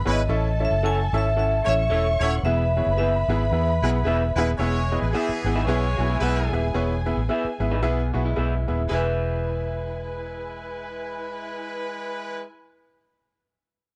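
A lush, distant, bowed violin section opens this joyful, danceable swung soul excerpt, joined at once by a ringing, metallic vibraphone melody with fast motor vibrato and plate reverb that lasts until 4.3 seconds, a clear horn section with a smooth top, woody upright piano accompaniment and a round, foam-muted electric bass sitting up front, while slightly broken-up, lo-fi guitar stabs enter at 0.8 seconds and a brighter second guitar riff sits in the background from 5.6 to 9.0 seconds, all within a dark production with light reverb.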